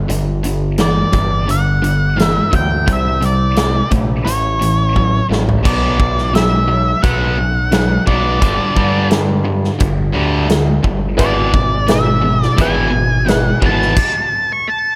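Classic rock with a confident, driving feel, this short cut from a longer piece moves in a straight 4/4. Two overdriven rhythm guitars play riffs in the background, one bright and the other dark and sludgy, while a growling picked bass with overdrive sits up front. A big, natural acoustic drum kit with a punchy kick and medium-tuned snare pushes the groove forward, and a drum fill at 5.0 seconds leads into the second section. An octave-fuzz lead guitar carries the melody up front from 0.8 seconds, its tone gritty and shadowed. A clear, woody upright piano, worn and slightly detuned, adds brief accompaniment in the background from 11.2 seconds before a stop at 14.0 seconds, all set in a small room with light reverb.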